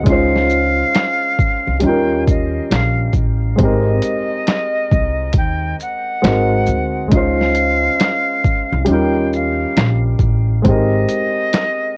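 An airy jazz flute with vibrato and a chiff opens this mellow, dreamy lo-fi hip hop excerpt in Ab major at 68 BPM, singing a high melody over an upright piano whose woody chords of Dbmaj7, Eb9 and Abmaj9 share the flute's muffled low-pass, cassette-tape haze. A pizzicato upright bass with a warm, woody acoustic tone and a compressed, pitched-down sampler-style drum kit join at 0.1 seconds; the kit has a thumpy kick, medium-tuned snare, hi-hat, shaker and handclaps, all swung on the 16ths. A light reverb frames this intimate home cassette sound, with the bass dropping out at 11.0 seconds and the drums at 11.8 seconds.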